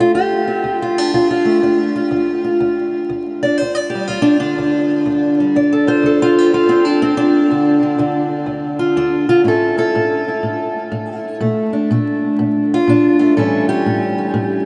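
A dreamy, reverb-soaked sound with vinyl crackle and a dulled top end frames this smoky, mournful acoustic country blues excerpt in D minor at 123 BPM with a swung feel, where a boxy, parlour-sized fingerpicked steel-string acoustic guitar with audible finger squeak and analog delay plays solo up front across 14.7 seconds, moving through Dm7, G5, A, Bbmaj7 and A7.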